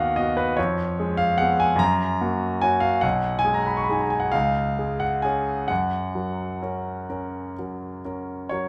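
An intimate, polished concert grand piano opens this dreamy, serene romantic nocturne in F# major, moving in a slow rubato 9/8 at 40-49 BPM by the dotted quarter, its deep bass, long sustain and audible action noise sitting up front in a moderate recital-hall reverb as the harmony drifts from B/D# through C#7/E# and G#m/B back to F# by 5.7 seconds in this fragment of a longer piece.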